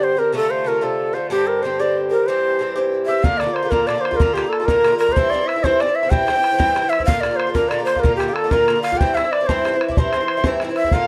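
Lively and rollicking, this Celtic folk jig moves at 125 BPM in a straight 6/8, set in C mixolydian and cut from a longer piece. A breathy, bright shakuhachi carries the melody from the start, close-miked and up front, its end-blown bamboo tone showing vibrato, a crisp attack and a touch of chiff. Beneath it, a picked Irish bouzouki provides accompaniment throughout, its double strings giving a metallic edge to an otherwise acoustic sound. Around 3.1 seconds a reedy wooden whistle joins with a second line high above, pure and distant, with its own vibrato and chiff, while a damped, tight bodhran enters at 3.2 seconds with a small-room feel. The harmony settles into a sway between Bb and C, and the whole is framed by light reverb in a dark, warm production.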